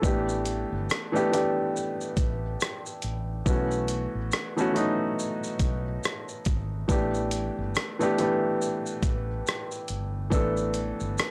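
A swung 4/4 groove at 70 BPM drives this dreamy, nostalgic lo-fi hip hop fragment in A mixolydian, with a dusty, compressed sampler-style kit up front, bringing a thumpy kick, gritty hi-hat, rim click and shaker that sound re-recorded in a large room. A felt-muted upright piano, soft and intimate with audible action noise and a cassette-tape, low-pass haze, carries the accompaniment through A9sus4 and B9sus4 chords, returning to A9sus4 at 6.9 seconds. Beneath it, a dark, round fretless electric bass holds the low end, and the whole mix sits under light reverb with a dry, gritty hardware-recorded sound.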